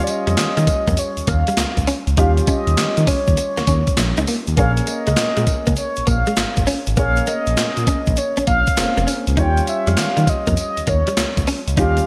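A gated 80s digital drum machine punches up front with a thumpy kick, gated-reverb snare, handclaps, hi-hat and tambourine, driving this slick new jack swing excerpt at 100 BPM with a 16th-note swing, while a smooth gliding synth bass, a mellow horn-like synth lead with chorus and vibrato, a dark concert grand piano, a clean direct-recorded electric guitar riff and a grainy tube shaker in the background move over Eb9 and Bbm9 chords in a bright, lightly reverberant 1980s-style digital production.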